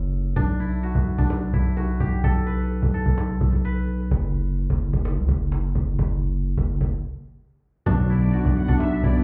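A deep, up-front sine 808 bass and a woody, saturated cajon open this menacing, hard-hitting half-time trap excerpt in B minor at 128 BPM, joined at 0.4 seconds by a silvery, fingerpicked steel-string zither ringing through digital delay, before a smooth vintage analog pad with subtle chorus and a short, glossy polysynth stab arrive at 7.9 seconds, followed at 8.1 seconds by a lush, bowed violin section with vibrato and delay, the whole mix sounding muffled as if heard through a wall and bathed in club reverb.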